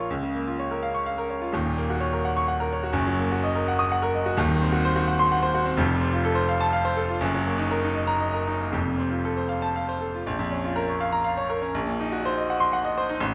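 Heroic and sparkling, this virtuoso classical piano study unfolds in a rubato 6/8 lilt, with a solo grand piano that sounds brilliant, natural and up front, ranging from Eb1 to Eb6. Close, detailed microphones sit within a moderate scoring-stage reverb as the harmony moves through minor chords, a diminished colour and F major. A new passage begins at 10.3 seconds on Bbm before the cut from the longer piece arrives at 13.3 seconds.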